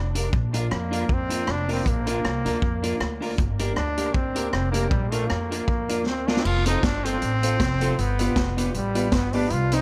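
Lightly reverberant and close, this joyful, bouncy ska excerpt at 157 BPM in Bb major sets a brilliant, vibrato-rich trombone melody with dub echo over a woody, growly pizzicato upright bass, a clean picked electric guitar, a vintage kit with a punchy kick, high-tuned snare, dark cymbals, dub echo and a fill at 6.1 seconds, and polished upright piano stabs with dub echo that sit in the background from 0.5 seconds.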